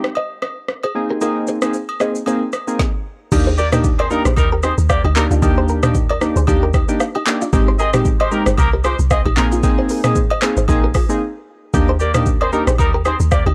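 Joyful and sunny, this afrobeats excerpt rides a lightly swung groove on an overdriven, up-front electronic drum kit with a deep kick, woody snare and metallic hats, joined by close acoustic agogo bells and woodblock and a round, detuned analog keys part with chorus. A bright, clean electric guitar riff, recorded direct and treated with lush chorus and analog delay, enters at 0.2 seconds, and at 3.3 seconds a dark, percussive log drum bass arrives, quickly followed by a punchy, tight horn section playing a second line with light vibrato. A brief break at 11.2 seconds interrupts the flow over chords moving between Ebmaj7, Abmaj7 and Bb9sus4, all wrapped in digital ambience and a dry, gritty cassette tape sound.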